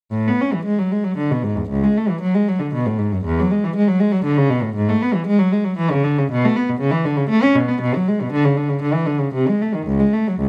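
A single bowed cello opens at 0.1 seconds and carries the whole fragment alone, in the manner of a baroque-style suite movement for unaccompanied cello. The mood is flowing and serene, moving in a gentle triple metre whose beats stretch and relax with expressive rubato. The cello sounds close and up front, with soft attacks, a singing vibrato and smooth portamento slides between notes, ranging from C#2 up to C#4. A light reverb surrounds the instrument, giving the intimate tone a little air. This short passage, lifted from a longer piece, plays through to 10.5 seconds.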